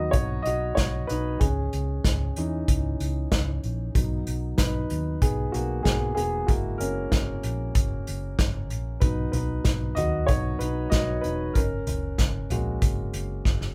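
A straight 4/4 groove at 95 BPM drives this hopeful piano-driven pop passage in B major, cut from a longer piece. The unplugged drum kit comes in at 0.1 s and sits up front, its bundle sticks working hi-hat, kick, a medium-tuned snare and toms, with a tight kick and a drum fill at 13.5 s. Beneath it, a vintage foam-muted electric bass, fingered and amped, gives a round, punchy low end. The dark baby grand piano, mellow and smooth with long sustain, is also up front and takes a solo across the whole 13.7 seconds. The chords move from B through C#madd9 and F#7 to a closing F#add9, and the band plays live together in a small room with moderate reverb.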